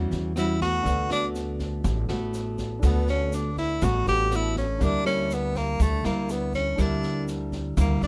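A dry, closely miked recording with a relaxed, breezy bossa nova feel, cut from a longer piece, where a clear tenor saxophone sits up front and plays a solo with light vibrato and scooped notes, entering at 0.4 seconds. Beneath it, a fingerpicked nylon-string guitar and a woody, dark pizzicato upright bass carry the harmony and low end through chords moving from A13 to D6 and then Gm6/D. A concert grand piano with deep bass, an acoustic drum kit with a high-tuned snare, rim click and boomy kick, and a grainy, bright tube shaker stay in the background.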